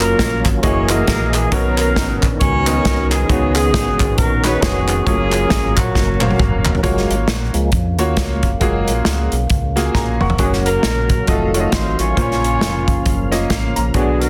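A punchy, up-front acoustic drum kit drives this reverent, soulful slice of uptempo gospel at 135 BPM in F# major, swinging in 4/4 beside a round, dark fingered electric bass and a brilliant baby grand piano with long sustain. A distant, roomy horn section carries the melody in octaves over rich extended chords, with crisp group handclaps in a small room until 6.7 seconds. At 6.8 seconds the lightly overdriven tonewheel organ, turning through a slow rotary speaker with chorus vibrato, takes a solo over very quiet, mellow French horns, and the punchy horn line returns at 10.4 seconds in a dense, heavily limited modern mix.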